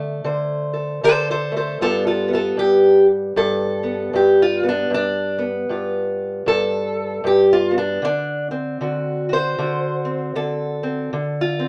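Acoustic country blues with a swaggering, soulful swing, this short cut from a longer piece features a lone fingerpicked parlour steel-string acoustic guitar, dark and woody with the boxy tone of old strings, sitting up front in a live room with a wet studio reverb as it moves from D7 to G7 and back to D7 at 8.0 seconds.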